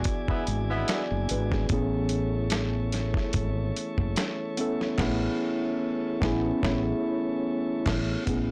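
A blown-out, overdriven recording with light reverb frames this short, soulful slice of smooth neo-soul R&B, moving at 73 BPM in A major with a gently swung 16th feel. Up front sit a gritty, compressed sampler-style drum kit with a thumpy kick, finger snaps, hi-hat, crash and a soft-clipped snare, and a dark, round fretless bass with transformer saturation. Meanwhile, a mellow tine electric piano with phaser and a clean tonewheel organ with key click and vibrato carry the chords from E7 to Amaj7 and Amaj9. A distant, tight horn section adds brief stabs at 0.3 seconds, and the band hits a shared accent from 5.0 seconds.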